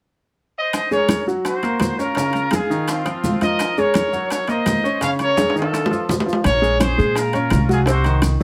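A straight 4/4 salsa pulse at 168 BPM in Bb minor carries this fiery, passionate excerpt, where a punchy, vintage trumpet section sings the melody with vibrato over a bright, brilliant upright piano with audible action noise, hard-hand congas, round, low-tuned bongos in the background, ringing metal-shell timbales, grainy maracas, and a dark, thumpy gut-string upright bass that enters at 6.4 seconds after a drum fill.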